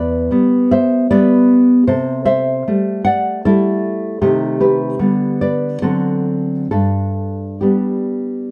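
A thumb-plucked nylon-string guitar plays alone and up front in this short excerpt from a romantic classical piece, its tone acoustic and warm across a range from E2 to F#5. In G major and 3/4 at a rubato 66-79 BPM, the sunny, warm mood moves through Em7, C6 and Am7b5/C before settling through G/D and D7 onto G at 6.7 seconds. A moderate small-room reverb and a dark production give the sound an intimate glow.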